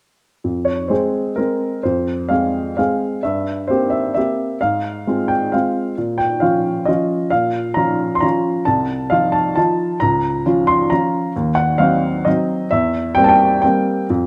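A rubato waltz in 3/4 at about 132 BPM, this short classical piece in F minor is cut from a longer work and carries a bittersweet, nostalgic mood. A solo upright piano plays alone from 0.4 to 14.3 seconds, spanning C2 to C6, its woody, intimate tone sitting up front with audible action noise. The harmony moves from Fm through Bbm, F7/C and Cdim/Eb before settling on C7/E, heard through close, detailed microphones in a moderate recital hall reverb.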